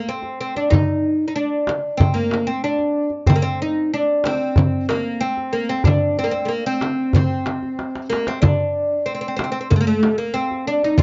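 A dark, lightly reverberant recording presents a soulful, hypnotic Turkish makam ensemble at 94 BPM in a straight 4/4, where a bright, woody, fretless oud with double strings, plectrum-plucked and up front, carries the melody from the start, joined almost at once by a large, deep, clay-shell darbuka with a natural skin and a compressed, saturated tone and, from 0.7 seconds, a small, close and dry frame drum played with hard hands, with a drum fill at 7.8 seconds in this short cut from a longer piece.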